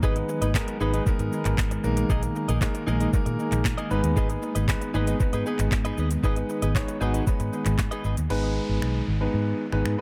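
Energetic and confident, this dance-pop excerpt in G# minor moves at 116 BPM in a straight 4/4, with a clear, intimate grand piano pumping under an analog delay, a dark, foam-muted fingered bass, a smooth R&B kit of knocking kick, sharp snare, metallic hats, snaps, claps, shaker and crash, a warm, direct-recorded clean guitar riff running through chorus and delay, and a very quiet, warbling pad until 8.3 seconds, when a downlifter sweeps into the closing section of an echo-heavy mix.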